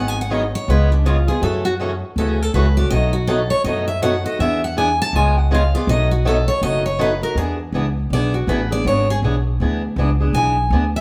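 Acoustic string swing in the jazz manouche style, this playful, charming fragment features a full-bodied steel-string guitar soloing over a boxy swing-style rhythm guitar with audible finger squeak and a dark, thumpy pizzicato upright bass, all three up front in a moderate stone room that gives the live trio a natural ring.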